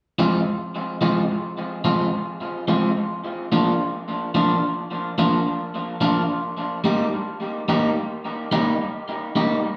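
An electric guitar enters at 0.2 s, picked and compressed at the edge of break-up, sitting up front and soaked in spring reverb and dub echo as it accompanies an Fm, Bb and Eb progression. This short reggae fragment moves at a laid-back 72 BPM in 4/4 with a swung sixteenth-note feel, and its mood is hypnotic. The sound is that of a band playing live in one large, reverberant studio room, with the highest frequencies rolled off, giving it a warm tone.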